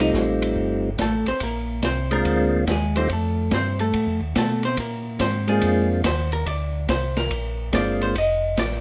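Greasy and bluesy, this swinging soul jazz organ trio cut features a round, percussive tonewheel organ carrying the melody through a slow rotary speaker until 8.2 s, a clean, compressed hollow-body electric guitar soloing up front over F9 and Bb9 changes, a mellow organ bass with vibrato and key click, and a small-room acoustic drum kit with dark cymbals and a boomy kick, all set in light reverb.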